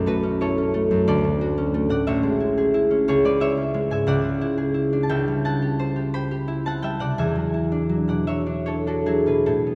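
A solo concert harp carries the whole excerpt, its fingerpicked notes ringing warm and up front as it ranges from A1 to B5 in a dreamy, serene classical passage in 6/8 at 49-61 BPM, played with a free, rubato feel. Lush extended chords drift from Bm11 through Dmaj7 and Amaj7 toward E13, arriving there at 7.2 seconds. A wet church reverb, heard from further back in the room, lets each tone bloom into a long, hazy tail across this 9.8-second excerpt.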